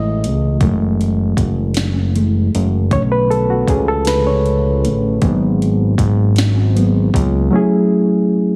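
A reedy, worn, slightly out-of-tune electric piano leads this short, late-night, yearning slow six-eight R&B fragment through F#m9, Bm9 and G#m9 chords, backed by a fat, detuned sawtooth analog bass with a filter sweep and an electronic kit with a soft kick, sharp snare and metallic hats, before the piano carries on alone from 7.5 seconds to the close at 8.6 seconds, the whole mix pressed into a heavily compressed, radio-like sound with light reverb and small-room ambience.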